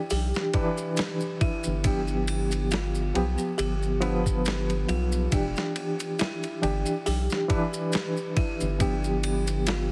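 Trip hop at 69 BPM in 4/4 with a light 16th-note swing, this short cut from a longer piece sits in E phrygian and feels cinematic and hypnotic, moving between Em7 and G7. A reedy, barky electric piano carries the accompaniment up front, lightly overdriven with a fast tremolo and tape echo, as if heard through its built-in speakers. Beneath it, a round analog bass with a deep, dark, sustained tone holds the low end, while a dusty soul sampler-style drum kit brings a thumpy kick, a medium-tuned snare, hi-hat and ride with gritty, compressed punch. A delicate, tinkling music box plays slightly out-of-tune arpeggios, close and dry but roughened by vintage 12-bit sampler grit and delay. Maracas, triangle and a group handclap add saturated acoustic texture in the background, and the whole mix carries a heavily compressed radio sound with light reverb.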